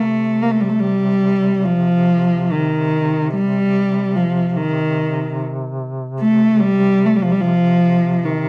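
The rhythm is rubato, loosely held around 68-75 BPM in 4/4, so the pulse breathes freely rather than marking a strict beat. This is a Caucasian folk lament in C dorian, solemn and full of longing, and it is a short fragment cut from a longer piece, lasting 8.5 seconds. A single bowed cello carries the melody between Eb3 and Bb3, sitting up front and close, with a soft attack, expressive portamento and a touch of slapback echo. Beneath it, a duduk holds a steady drone on C3 in folk style, set lower in the mix with a smooth top. Both instruments sing with vibrato and play together from start to finish. The sound is a dry, intimate 1970s-style studio recording with light reverb and a warm overall character.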